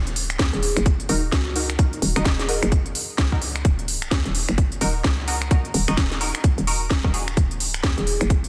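Bass house with an aggressive, bouncy swung groove, driven by a hollow, knocking FM bass that punches through tube saturation and sidechain pumping alongside a tight electronic kick, while a garage kit of cracking snare, crisp hats and finger snaps sits up front, both drum parts carrying a tape-warm, large-room weight. A nasal, band-passed sawtooth chord stab with phaser, subtle chorus, delay and its own pumping cuts in from 1.1 to 7.3 seconds. Behind it, a mellow, ringing vibraphone played with soft mallets drifts through delay in a boxy small room, all held on a single Eb minor chord under a dense, heavily limited master.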